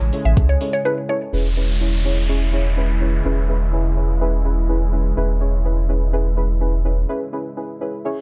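A dark, close, dry-sounding production opens this carefree, euphoric dance-pop excerpt in E major at 125 BPM in a straight 4/4. It starts on a drop over an Amaj7 chord, with a smooth electronic R&B drum kit of soft kick, tape-warm hi-hats and shaker sitting up front for only the first 0.8 seconds before a break. A round, sine-like sub bass and a thick, detuned unison pad built from sawtooth and square waves both pump against the sidechain. A deep, nasal chord stab with a detuned chorus and low-pass filter also pumps with the sidechain. A woody, mallet-like FM pluck carries a brief melody between B4 and E5 through chorus and digital delay. From 1.3 seconds the harmony moves to E6 under a long filter sweep as an electronic downlifter falls away, the bass drops out at 7.0 seconds, and a reverse cymbal arrives at 8.1 seconds.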